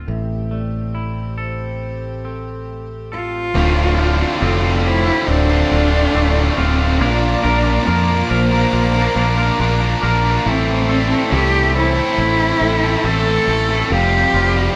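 A straight 4/4 pulse at 70 BPM drives this melancholic, brooding rock passage in D minor, with a direct fingered electric bass up front beneath twangy clean guitar arpeggios, metallic vibraphone arpeggios struck with medium mallets, and earthy, bright chamber strings holding sustained chords in the background. At 3.1 seconds a dark, expressive bowed cello takes the melody with vibrato and portamento, and at 3.5 seconds two picked overdriven guitars join on a riff, one up front and the other set behind it. The harmony moves from Am7 through Dm7 and Bb back to Am7 before settling on Fsus2, and the moderate large-studio reverb gives the sense of a band playing live in one room.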